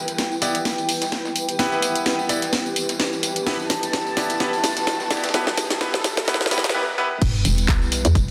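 Bass house with a bouncy, swaggering feel, cut from a longer piece, builds over a dark, detuned analog pad, a blurred granular cloud pad in the background and a very quiet riser, while an up-front house kit with a cracking snare, claps, hi-hat, tambourine and crash plays a fill alongside a faint, gritty sampler-style kit. Brilliant grand piano stabs with tape echo and audible action noise ride the sidechain pumping until the drop at 7.2 seconds, where a punchy electronic kick and a hollow, knocking FM bass with overdrive hit alongside a sub drop impact. The dense, heavily limited master sits in a lush hall reverb.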